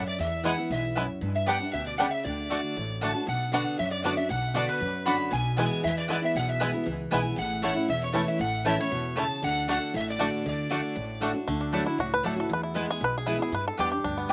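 A straight, brisk four-beat bluegrass rhythm runs through this rustic, joyful fragment of a longer piece. A lap resonator guitar, played with slide and fingerpicks, carries a metallic, nasal melody high up, while a biting fiddle with light vibrato follows as a second line; both drop out at 11.2 seconds. Beneath them, a full-bodied dreadnought guitar sits up front with picked accompaniment, a mandolin adds woody double-string stabs, and a thumpy, dark upright bass with gut strings holds the low end. A twangy, percussive five-string banjo, also up front, carries its own melody and takes a solo from 11.5 seconds over chords moving through Dadd9, E and G. Slapback echo colors every part except the bass, and the sound is dry and open-air, recorded outdoors with little reverb.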